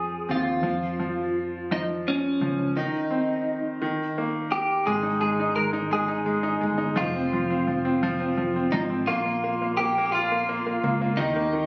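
A clean, picked electric guitar carries a tender, heartfelt melody through lush chorus and analog delay, up front beside a brilliant, polished grand piano with short sustain and a round, dark fretless bass, in this six-eight pop ballad fragment captured on a phone in a club room, with a moderate echo-chamber reverb around it and the harmony moving to a new section at 4.9 seconds.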